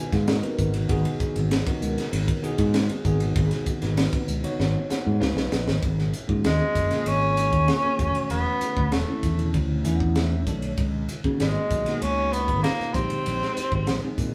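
Electric jazz fusion at 97 BPM in a funky, slick straight 4/4, with a bright, bell-like tine electric piano comping over G#m9 and sus chords, a fretless electric bass, and a crisp, gritty drum kit with punchy kick, high-tuned snare and bright cymbals in a pumping small stone room, before a breathy, vibrato-laden tenor saxophone takes an up-front vintage solo from 6.5 seconds, the band playing live together in this cut from a longer piece.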